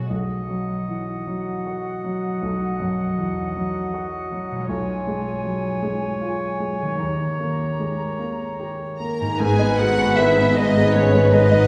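This is a cinematic, emotional film score for orchestra, moving and uplifting, unfolding in a slow, rubato 6/8 in a short passage cut from a longer piece. A clear, present grand piano carries the accompaniment from the start, with a ringing, fingerpicked concert harp spinning arpeggios in the background. Above them, an airy flute group with a crisp attack, a solo oboe in classical style, and a soft, smooth clarinet weave second lines, while the harmony moves through B, C#/B and D#7. At 9.0 seconds the violins arrive, one section singing the melody with a lush, focused vibrato and a very quiet second section adding a soft, expressive line beneath it. From 9.4 seconds the music turns to G#m as an intense, very quiet viola section returns, a mellow, distant French horn section holds sustained chords, and a close chamber cello section and an expressive double bass section ground the bass. The whole ensemble sits back in a wet recital hall, heard from further back in the room.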